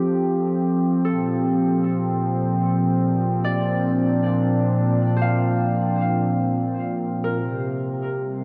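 A straight, unhurried 4/4 pulse underlies this serene, melancholic ambient fragment, cut from a longer piece. An up-front analog pad holds sustained chords from the very start, its soft-attack sawtooth and sine tones detuned, wave-folded and warbling under chorus, with a smooth, vintage character. At 1.0 s a Celtic harp enters lower in the mix, playing mellow, ringing fingerpicked arpeggios in a higher register that trail into a diffuse ambient delay. The harmony rests on F before moving to Bbmaj7 at 1.1 s, lingering there until a closing turn toward a C7 colour. A long plate reverb soaks the mix, giving it a dreamy, suspended haze.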